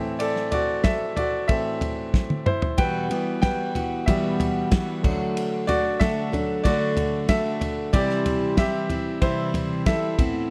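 Set in light reverb, this driving, earnest slice of piano-driven pop opens on a polished, present grand piano moving through Am, Emadd9, D and C over a dry, dark 70s drum kit with a tight kick and a medium-tuned snare, which plays a fill at 2.1 seconds before a full-bodied, fingerpicked steel-string dreadnought guitar enters up front at 2.8 seconds with a riff, its finger squeaks audible.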